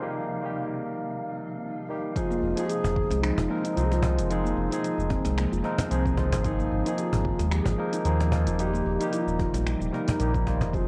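A home recording on cassette, steeped in moderate spring reverb, carries this mystical organic downtempo excerpt, where a barky, pumping tine electric piano with tape echo and a blurred granular cloud pad open beside a breathy wind-like tuned noise texture until 2.2 s. At that point a mellow, hollow bass bansuri melody, ringing handpan arpeggios, an overdriven deep house drum kit with cabasa, finger snaps and metallic hi-hat, and a punchy electronic kick in the background join, followed by a deep, round analog bass up front at 2.4 s and a snappy cajon at 2.8 s.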